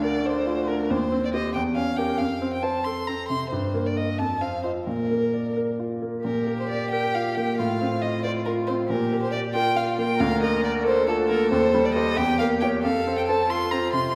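Spirited and lively, this fragment of a quick classical-period piano trio movement in 6/8 with rubato phrasing sets a rich, vibrato-laden bowed violin melody up front over a clear, open grand piano accompaniment with long sustain, joined at 6.2 seconds by a smooth-topped cello second line as the opening section repeats, all bathed in a wet recital-hall reverb.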